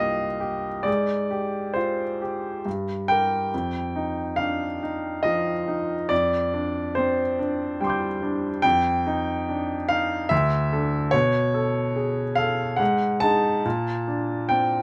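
Nocturnal and hazy, this 14.8-second fragment of impressionist classical solo piano drifts in a rubato 3/4 at around 66-74 BPM, its clear, intimate baby grand sitting up front with long sustain, audible action noise and light reverb as it moves through suspended and seventh harmonies from Cm7 to a closing Bbadd9.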